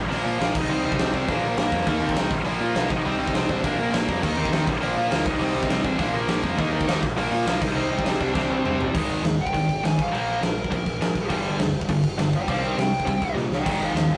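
A rough rehearsal-room recording with warm saturation and light reverb carries this urgent, raw punk rock excerpt in a straight 4/4. Up front, a tight, double-tracked distorted guitar plays the picked riff while a big acoustic drum kit, set in a bright stone room, comes through with a fat snare, punchy kick, crash, hi-hat and toms. A growling, overdriven picked electric bass adds a punchy, direct-and-amped low end. Sitting in the background, a dark, smooth overdriven lead guitar carries the melody, cycling over Bb, Cm and Eb5 changes in the opening stretch. A drum fill at 8.4 seconds leads into a lead guitar solo at 8.9 seconds, where the harmony shifts to power chords before settling on Cm and Ab, with another fill at 13.4 seconds as the clip ends.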